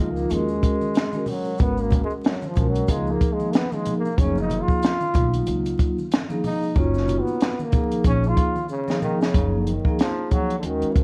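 Jazz-hop at 93 BPM in F# major, this smooth, relaxed excerpt swings gently as a distant, roomy trombone carries a solo melody from the start until 9.3 seconds, over mellow soft-mallet vibraphone with slow motor vibrato and a woody, thumpy pizzicato upright bass moving through D#m7, G#m7, C#69 and F#maj9. A compact cocktail kit sits up front with a punchy kick, high-tuned snare and rolled-off top, adding a fill just before 9.3 seconds, while congas and tube shaker stay in the background. The sound is worn and warbling like old cassette tape, with vinyl crackle, pitch drift and light reverb, and it is cut from a longer piece.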